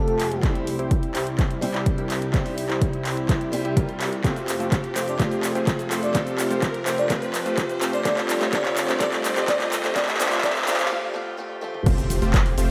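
Festival progressive house with a euphoric, anthemic build-up, where a picked, boxy steel-string acoustic guitar and a lush supersaw pad pump under a punchy, detuned supersaw stab riff in the background, an airy, dreamy lead with chorus and delay briefly sounds at the start and returns to sing its melody from 5.1 s, layered up-front dance drums, fills and an electronic kick drive a filter sweep and a very quiet noise riser into a break at 10.9 s, and a deep, saturated sub bass lands with the impact at 11.9 s.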